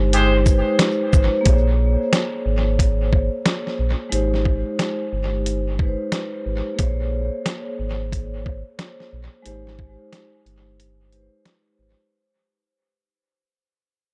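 Boom-bap hip-hop at 90 BPM with a 62% 16th-note swing, dark and gritty in mood, tuned slightly sharp to A4 = 445 Hz and cut from a longer piece. Up front, a compressed, sampler-style soul drum kit (thumpy kick, medium-tuned snare, hi-hat and shaker, touched with dub echo) sits over a deep sine-and-triangle sub bass with an octave. A mellow, metallic vibraphone with soft mallets and slow motor vibrato rings out through cassette-tape filtering and dub echo over Abmaj7 and Bbm9 chords, and the echo-heavy mix fades out from 1.5 s into a break at 10.8 s.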